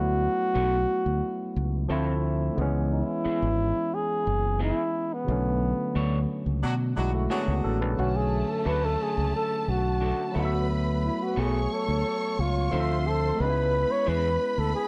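A breathy, close-miked flugelhorn carries the melody up front in this silky, smooth soul cut at 89 BPM in B dorian, its dark, scooped jazz phrasing turning into a solo at 8.0 s as lush, bowed strings with portamento enter distantly behind it. Underneath, a punchy fingered electric bass sits forward, a barky, lightly overdriven tine electric piano comps brightly, and a slightly broken-up electric guitar through a small old amp picks a riff. A loose horn section with octave doubling and tube saturation adds brief stabs from 6.6 s during a band accent, all set in a dark production with light small-room reverb, taken from a longer piece.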